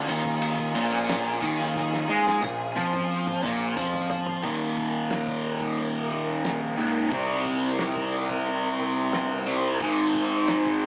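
Hazy and kaleidoscopic, this psychedelic rock fragment at 89 BPM in Eb mixolydian sets an up-front, double-tracked fuzz guitar riff with phaser over a punchy overdriven picked bass, a cloth-damped thuddy drum kit with a fat snare and dark cymbals that rolls through a fill from 1.8 to 4.4 seconds, a jingly tambourine that drops out at 4.3 seconds, and lush, distant bowed strings holding sustained chords from Bbm7 through Eb, Cm7 and Ab, all captured as a rough rehearsal-room recording with saturation and a small-speaker sound.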